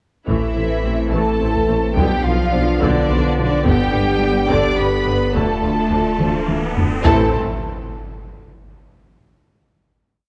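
A big taiko drum ostinato in a slow 6/8 at 71 BPM drives this tense, vast hybrid orchestral and electronic film cue in A minor, where lush violins carry the melody with a richer second violin section doubling it at the octave, violas push a driving ostinato, cellos and double basses anchor the low end alongside a mellow tuba and a deep, punchy sub bass, dark horns and trombones hold very quiet sustained chords with a hollow, flute-like pad entering at 0.8 s, and an electronic riser from 5.3 s builds to a low impact at 7.0 s under the final chord, the mix sitting in scoring-stage reverb and the warbling pitch drift of worn cassette tape.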